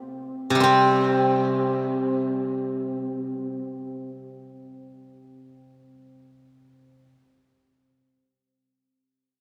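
Soaked in a huge, dreamy reverb with a four-second tail, this short cut from a longer piece has an elegant, pastoral calm rooted in Chinese traditional music. A solo steel-string zither, played with fingerpicks and sitting up front, rings out silvery and bright between C3 and C4, its notes carried further by delay. It plays alone for the full 7.1 seconds.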